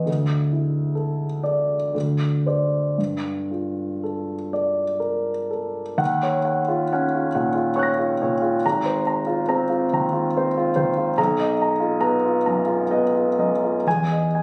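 Hazy and wistful, this short cut from a longer impressionist classical piece for solo concert grand piano drifts in rubato 3/4 at 56-73 BPM in G dorian, its clear, intimate tone carrying deep bass, long sustain and audible action noise up front, moving from Dsus2 and Gm9 colours into a second passage at 6.0 seconds that glides through Ebm9, Ab69 and Bmaj7#11 to settle on Emaj7, all captured on a phone in the room and polished with light studio reverb and compression.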